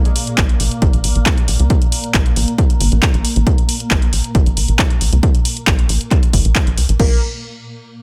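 A dry mix carries this driving, relentless cut of peak-time techno at 136 BPM, where a punchy, up-front electronic kick and an analog drum machine with crash cymbal, handclaps and pumping hi-hats, both re-recorded in a large room, push beneath a tight, dark sawtooth sequencer bass with tube saturation and a tense, detuned granular drone with its own reverb, until a gritty, screaming overdriven synth lead with distortion, analog chorus and tape echo cuts in at 7.0 seconds.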